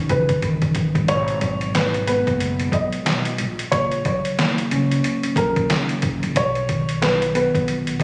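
An up-front, overdriven sampler-style drum kit with 12-bit grit, a thumpy kick, a medium-tuned snare, hi-hat and handclaps opens with a fill until 1.1 s and drives this reflective, gritty boom-bap hip-hop excerpt alongside a woody pizzicato gut-string upright bass, a mellow tine electric piano with cassette-tape coloring in the accompaniment, and a dark, intimate upright piano melody with audible action noise and short sustain, all heard through plate reverb and a phone recording in the room.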